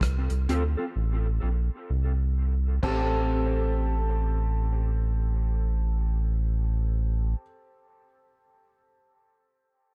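Dub reggae excerpt in A minor at a slow 64 BPM with a swung sixteenth feel, deep and spacious, moving from Dm7 to Am and Am7. A round, up-front analog bass holds the low end throughout, while a clean, fingered electric guitar with ensemble chorus and dub echo plays dark accompaniment, and cloth-damped, thuddy drums with a tight kick and dark cymbals fall silent at 1.0 s and stop for good at 3.1 s. A brilliant, woody upright piano enters with echoing stabs at 2.8 s, all set in a heavy studio reverb.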